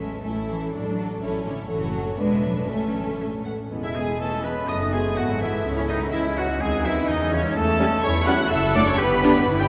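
A rich violin section sings the melody with vibrato in this graceful, cheerful excerpt from a quick classical-period symphonic movement in 2/4 at 124 BPM, played with rubato and moving from A major to E major at 3.7 s. A second violin line, lush violas, a smooth cello section and an intense double bass section fill out the strings, while punchy French horns hold sustained chords in the background. From 3.7 s a mellow bassoon and a very quiet clarinet join, a distant oboe and a pure, silvery flute add second lines just after, and the orchestra rings in the long, wet reverb of a church or concert hall.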